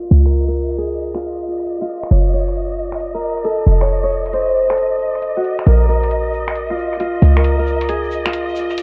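A thumb-plucked Celtic harp opens this moody, late-night two-step UK garage excerpt at 135 BPM, its ringing acoustic melody sitting up front and trailing tape echo. It shares the opening moment with a punchy, tight 808-style bass that blends a sine tone with a noise layer, a lush bowed violin section holding soft-attack chords with vibrato and a smooth top, and a grainy, saturated tube shaker kept very quiet in the background. At 0.1 seconds an electronic, layered house drum kit joins with finger snaps and hi-hat, re-recorded in a small room and soaked in dub echo, all set to a 66% swing on the sixteenths. The harmony moves from Dbsus2 through Gb5, F7b13 and Bbsus4 before returning to Dbsus2. A filter sweep runs across the whole passage, and the mix leans heavily on echo and a low-pass filter, with a light reverb that adds to its hazy, after-hours atmosphere.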